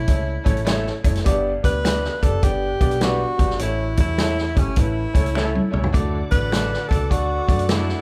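A breathy tenor saxophone carries the melody from the opening moment, its scooped notes and vibrato trailed by tape echo, over a dark, round, foam-muted electric bass in this uplifting, danceable stretch of uptempo 1960s-style soul cut from a longer piece. A clear but slightly boxy baby grand piano fills in the accompaniment, while a vintage drum kit sits up front with a punchy kick, a medium-tuned snare and a rolled-off top, giving the swung groove its drive. Slightly broken-up, lo-fi electric guitar stabs and finger snaps join early, both very quiet. The band hits an accent at 3.6 seconds, and a tight, mellow horn section with a smooth top briefly adds a second line at 5.1 seconds as the drums play a fill. At 5.9 seconds a reedy tonewheel organ enters with sustained chords, its key click, chorus vibrato and slow rotary speaker set behind the band, and light reverb places the whole group playing together in one room.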